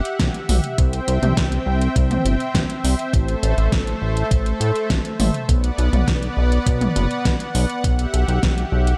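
Synthwave with a nocturnal, nostalgic mood, where a smooth, detuned sawtooth pad holds chorused, sidechain-pumped chords over a glossy, saturated pulse-wave bass set up front, a thumpy, tape-warm electronic kick and a layered pop kit with a fat gated snare, metallic hats and toms, all moving through Emadd9/B, C, Am and Bm in a dry, close sound.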